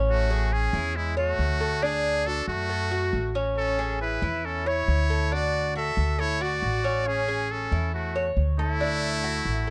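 Latin music with a sunny, danceable mood and a straight pulse, heard here as a short cut from a longer piece. A Cuban tres picks mellow, metallic arpeggios on its doubled strings, some of them octave-doubled, while a woody, thumpy upright bass with gut strings is plucked up front from the very start. From 0.1 seconds a trumpet with a metal mute carries the melody in a buzzy, thin, jazz-style voice with light vibrato and a soft attack, sitting up front. Beneath it, a bright trumpet plays a lower second line in a pop style, scooping into notes with light vibrato. The harmony rocks between Amaj7 and D or Dadd9 throughout, and the whole has the dry, close sound of a 1970s-style studio recording.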